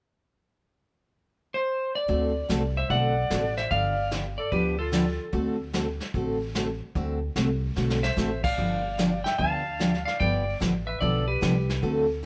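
A swung 4/4 pulse at 148 BPM drives this playful, down-home western swing country excerpt. A clean lap steel guitar, played with fingerpicks and slide, carries the melody up front from 1.5 seconds. At 2.1 seconds the band enters: a woody, full-bodied dreadnought acoustic guitar picks the accompaniment, a thumpy pizzicato upright bass holds the low end, and a vintage brush kit with dark cymbals, a punchy kick and a rolled-off top keeps time from a small room. A clear clarinet adds a second line, sounding distant and roomy, with vibrato and scooped notes in a jazz style. The harmony moves between D7 and G9, a drum fill at 7.8 seconds leads the lap steel back in, and light reverb gives the whole a gentle, homey warmth.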